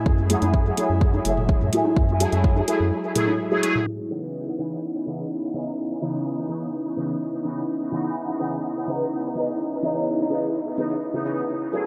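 Deep and cavernous, this dub techno cut from a longer piece moves at 126 BPM in a straight 4/4, tuned slightly low in C# minor. A soft, breathy pad holds sustained chords throughout, pumping against the sidechain with chorus and a gritty 12-bit sampler edge, while a faint wind-like noise texture hovers alongside it. In the opening seconds an overdriven, up-front kick and a round, dark analog bass anchor the groove, joined by tape-warm electronic congas and toms with dub echo sitting in the background. A juicy, detuned sawtooth polysynth fires bright, resonant stabs through chorus, phaser and dub echo, its filter sweeping as metallic, overdriven hi-hats tick along under a low-pass filter. At 3.9 seconds the harmony shifts from F#m9 to C#m9, and a grainy egg shaker slips in far back in the mix, all wrapped in a moderate echo-chamber reverb.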